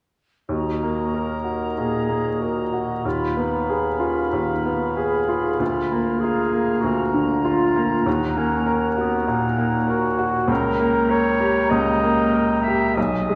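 A clear, intimate baby grand piano carries the melody up front, its long sustain and audible action noise heard on a wet scoring stage, in this brooding, passionate romantic movement for piano and orchestra with a rubato feel. Around it, a smooth-topped cor anglais sits in the background, a distant clarinet adds a roomy solo voice, and a small, pure-toned flute group plays tongued, straight-tone lines far off. The harmony moves from Ebm through Fm7b5/Eb and Bb/D back to Ebm before ending on Eb7/Db, as this passage, cut from a longer piece, stops at 13.4 s.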